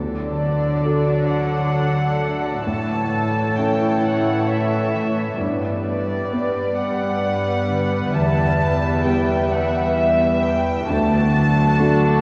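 Cinematic, tender and moving film score in a rubato three-beat lilt, cut from a longer piece, where a warm chamber violin section carries the melody from 0.4 s over a darker violin second line, a mellow, long-sustaining grand piano, a background viola section, ringing background harp arpeggios and a rich, floating cello section bass, all the strings bowed softly sul tasto with light vibrato on violins and violas, while the chords move from D through A, G and Em back to D, set in a wet cathedral reverb and colored by worn, warbling cassette-tape pitch drift.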